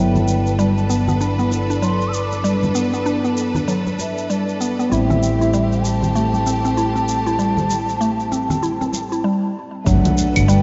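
A woody, warbling FM synth pluck carries chorused, delayed arpeggios through this hypnotic, meditative organic downtempo excerpt at 97 BPM with a 16th-note swing, set over a round, amped fretless bass and a Gmaj7 to Am7 progression. An airy, distant, unsteady bansuri with vibrato drifts above on digital delay, while a clean tine electric piano with phaser and a lush bowed string section both pump under sidechain, and bright background congas join electronic shaker, hi-hat and claves re-recorded in a small room. At 9.9 seconds a deep electronic kick and a background impact arrive as the chords return to Gmaj7, all within a hall reverb and a rough home-demo mix with a dull top end.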